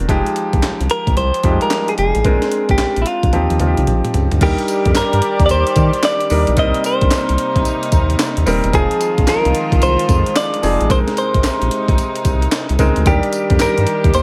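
A clear grand piano and a round, deep analog bass with a sawtooth edge open this punchy, bouncy new jack swing excerpt at 111 BPM in F dorian, joined at once by an up-front breakbeat kit with a thumpy kick, high-tuned snare, handclaps, tambourine and gated reverb. A bright, twangy clean electric guitar carries the melody from 0.9 seconds, and after a drum fill the section shifts at 4.4 seconds, where a studio string section with a reedy, gut-string tone adds sustained chords over a progression moving from Ebmaj7 through Cm7 and Fm7 to Bb9sus4. The swung sixteenths keep the groove buoyant, while light digital ambience gives the mix a gentle sheen.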